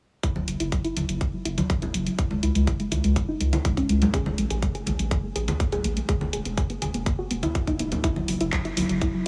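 Soaked in a huge ambient reverb, this dreamy progressive house excerpt moves at 123 BPM in a straight 4/4 with a driving, expansive mood. A soft, round pluck sits up front playing arpeggios between F#3 and G#4, its dark, detuned tone coloured by lush chorus, tape echo and sidechain pumping while a filter sweep runs across it from 0.2 to 9.3 seconds. Beneath it, a punchy, overdriven electronic kick anchors the groove alongside a pop drum kit of handclaps and hi-hats with warm hats, and congas struck with hard hands add a small-room acoustic texture, pumping with sidechain compression. A deep, thick sub bass with a saturated sine tone holds the low end from E1 to C#2, also pumping with the sidechain. The harmony moves from Esus2/F# through C#5, a chordless stretch at 4.1 seconds, and E5 before returning to Esus2/F#, all within a piece cut from a longer track.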